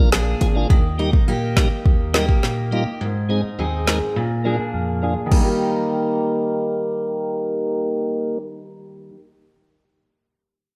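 Summery and bouncy, this short dancehall excerpt moves at 104 BPM in a straight 4/4, sitting in Eb major and cycling through Bb7, Eb and Ab. A punchy, heavy 808-style bass, a sine tone with a noise layer, fast attack and decaying tail, hits up front only briefly before dropping out at 0.7 seconds. The electronic afro-pop drum kit sits up front with a deep kick, woody snare, metallic hats, rim clicks and crash cymbal, giving the groove a produced edge. A piping, scooped tonewheel organ plays clean accompaniment through a slow rotary speaker and a low-pass filter. A bright picked steel-string acoustic guitar spins arpeggios with an auditorium character, also softened by a low-pass filter. A filter sweep runs through the opening section, a silent gap falls at 4.7 seconds, and a new section begins on Eb at 5.3 seconds, all set in light reverb.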